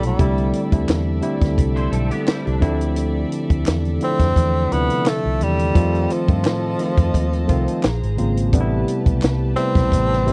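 A dry, close, small-room recording of lush 1970s-style soul, smooth and silky with a light swing, in which a vibrato-laden tenor saxophone sings the melody up front over a worn, slightly out-of-tune, lightly overdriven electric piano, floating sul tasto strings, a dark, round, foam-muted fingered bass and a compact drum kit with a punchy kick and a high-tuned snare, while crisp handclaps sit in the background from 0.9 seconds and a bright, twangy, chorused electric guitar riff flashes by between 1.8 and 2.8 seconds in this fragment of a longer piece.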